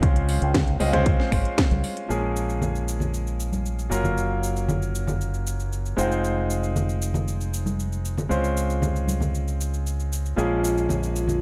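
A light, small-room sound frames this sleek, sensual nu-disco cut at 116 BPM in Bb minor, where a brilliant, up-front grand piano pumps with sidechain and slapback echo over a bright, tube-saturated envelope-filtered fingered bass, a punchy kick that drops out at 1.7 s, a house kit of cracking snare, metallic hats, shaker and finger snaps, ringing congas in the background from 0.5 s, and a dry, close-miked vibraphone that touches a single F4 at 10.4 s as the chords move from Dbmaj7 through Bbm7, Gbmaj7 and Fm7.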